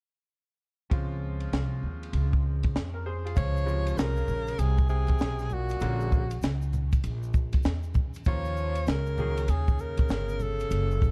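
A breathy, close-miked alto saxophone carries the melody from 3.4 seconds with jazz-style vibrato, joined by a mellow tenor saxophone whose subtone and scooped notes add a smooth second line, while a bright, saturated tube shaker and congas sit in the background. Underneath this relaxed jazz-hop groove at 98 BPM with a swung feel in Db major, a compact cocktail drum kit with a punchy kick, high-tuned snare and rolled-off top sits up front beside a woody, thumpy pizzicato upright bass. A clear vintage grand piano with long sustain comps through Dbmaj7, Bb7alt and Eb7sus2 until 9.4 seconds, all in a dark production with small room ambience.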